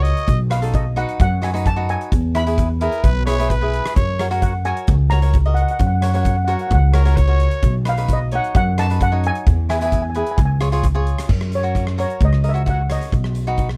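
A straight 4/4 calypso groove at 131 BPM in F# major carries this sunny, festive excerpt, where a mellow, shimmering steel pan sings the melody from 0.5 seconds over crisp picked cavaquinho, a woody, up-front pizzicato upright bass and a punchy, polished gated 80s drum kit with bright cymbals and rim clicks, while a raspy, growling trumpet with scooped notes and vibrato adds a second line until 7.7 seconds, all in a dry mix.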